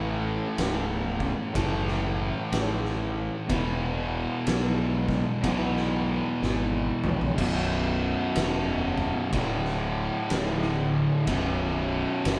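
A slow, swung 4/4 crawl sets this brooding, ominous stoner and doom metal excerpt in motion, with a double-tracked, picked fuzz guitar riff up front moving from A and E to B5, D5 and back to B5, supported underneath by a growly, overdriven fingered electric bass. The oversized low-tuned drum kit joins at 0.6 seconds with a fat snare, punchy kick, toms, crash and ride, its gritty, saturated sound ringing in a bright stone room, and it breaks into a fill from 6.4 to 7.4 seconds. The band plays live together in one room under light reverb, tuned slightly below standard pitch.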